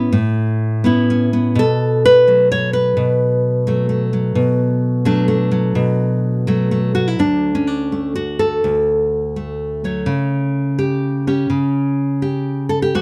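A dark, lightly reverberant production frames a bright nylon-string guitar placed up front in this pastoral folk piece, cut from a longer work and set in three-four time. The single classical guitar is fingerpicked across a span from D2 to C#5, moving from Aadd9 to Bm7 before a second passage begins at 7.2 seconds on Dmaj7 and settles on A7/C# at 10.1 seconds. The overall mood is warm and pastoral.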